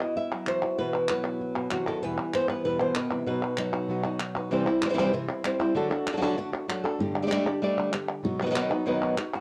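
A bright, fingerpicked flamenco guitar carries the melody up front, its finger squeaks audible and a plate reverb trailing its lines as it ranges from B2 up to E5. This fiery, dramatic flamenco fragment, cut from a longer piece, pairs it with a second fingerpicked guitar, boxy in tone, that sits lower in the mix and punctuates with stabs. Crisp, close palmas hand claps run alongside both guitars across the full 9.4 seconds. The harmony moves from Bsus4 through Em and B, then shifts at 4.5 seconds into a new section moving through C, D and Gsus2 before landing back on B. Both guitars carry a cassette tape coloring, and the whole sits in a moderate studio reverb with the intimate character of a home recording on cassette.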